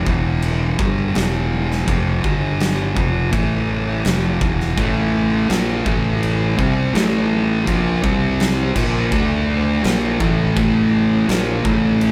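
Stoner and doom metal at a brooding, hypnotic 83 BPM, this short excerpt from a longer piece has a band playing live in one room, with an up-front thick fuzz guitar riffing on E minor and heavy power chords while a growly, punchy overdriven fingered bass sits beneath, an oversized low-tuned drum kit plays with a boomy kick, fat snare and dark crash cymbals in a pumping, gritty room sound, and a second, darker fuzz guitar joins in the background at 4.8 seconds.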